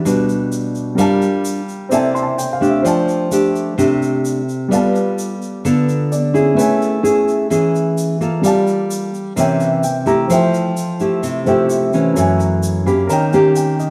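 A thumb-plucked nylon-string guitar sits up front in this melancholic, intimate bossa nova, carrying the accompaniment with a classical tone across a low-to-middle range. A baby grand piano with a natural, short-sustained sound shares the accompaniment and adds brief fills, first at 1.9 seconds and again near 5.9, 9.4 and 12.6 seconds. An egg shaker with a grainy, bright texture sits quietly in the background, entering at 0.1 seconds. The harmony moves through rich extended chords such as Em9, C13, F69, Amaj7 and C7b9, giving the straight 4/4 feel a wistful colour. The band plays live together in a moderate stone room whose reverb lends a gentle sense of space to this short passage, which is cut from a longer piece.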